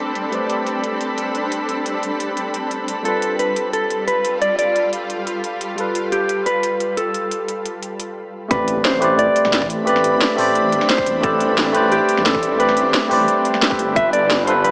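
A dark, clean electric guitar carries the melody in this dreamy, soulful liquid drum and bass excerpt at 176 BPM in A minor, entering at 3.1 seconds with a fingered tone. Beneath it, a bright tine electric piano plays clean, direct accompaniment through a dub echo, while a shimmering, ethereal pad holds sustained chords with an octave-up shimmer, granular texture, chorus and its own reverb, pumping against the sidechain. Tape-warm drums sit up front with a cracking snare and crisp hats, both softened by low-pass filtering, as the harmony moves between Am11 and G9. After a brief stop, the drop lands at 8.5 seconds with a very quiet electronic impact, a tight layered kick and a menacing detuned saw bass whose saturated, evolving filter swell adds weight. The whole piece sits in a moderate recital hall ambience with a small-speaker character.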